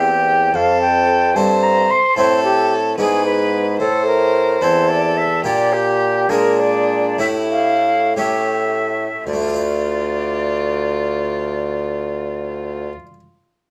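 A straight, flowing 6/8 lilt counted in dotted quarters between 52 and 74 BPM gives this grave, baroque-style sonata movement in D minor its gentle sway, with tuning set at A4 = 439 Hz. A single bowed violin carries the melody in a rich, smooth and even voice with vibrato, while a silver concert flute plays a second line above it, its tongued, airy, metallic tone sitting up front with vibrato. Beneath them, a clear, classical-style bassoon holds the bass as an up-front solo voice, and a full French-style harpsichord with two sets of strings supplies plucked continuo accompaniment. The harmony moves from C7/E through F, A minor and E7/G#, then darkens through G minor and B-flat seventh before an A7sus4 resolves to A7, with the music slowing from 4.6 to 9.3 seconds to arrive on D minor. The other parts fall away at 12.9 seconds, leaving the harpsichord to sound alone until 13.2 seconds, all set in a moderate studio reverb in this passage cut from a longer piece.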